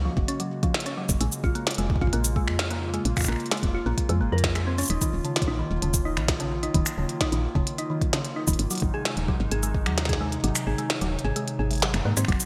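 Glitchy and playful, this 130 BPM IDM excerpt in straight 4/4 sets a warbling, nostalgic pad with lo-fi 12-bit sampler grit, chorus and built-in reverb over a woody, round FM bass and a tine-like thumb-piano synth pluck spinning chorused, delayed arpeggios through Gbadd9, Bbm7, Ebmadd9 and Ab. A soft, tape-warm electronic kick anchors the groove until it drops out at 10.4 seconds, while an up-front glitchy kit of finger snaps, clicky hi-hats, shaker and a tiny snare crackles through gated reverb and digital delay. At 12.4 seconds a barely audible granular texture adds a twinkling, sparkling shimmer to the bright 1980s-style digital production and its light reverb.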